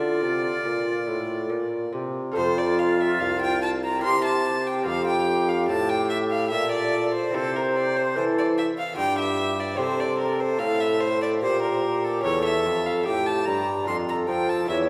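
A rich, gut-string violin carries the melody up front in this introspective, flowing baroque-style sonata movement in a rubato 3/4, cut from a longer piece, alongside a pure, expressive baroque flute on a second line, a warm bassoon with light vibrato on the bass, and a very quiet, delicate fingerpicked lute with double gut strings, all heard from further back in a wet concert hall.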